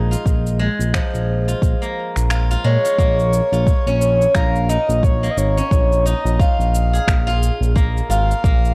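A swung, unhurried groove of deep electronic kick drum and electronic cabasa with finger snaps drives this meditative organic downtempo piece, with the kick dropping out briefly from 2.3 to 3.0 seconds. A silvery steel-string zither rings through fingerpicked arpeggios touched with tape echo, over a dark, up-front synth bass whose sustained sawtooth tone carries ring modulation, vibrato and sidechain pumping. At 2.7 seconds a soft, breathy flute-like synth lead enters with subtle chorus and tape echo, all captured in a dry, gritty cassette sound.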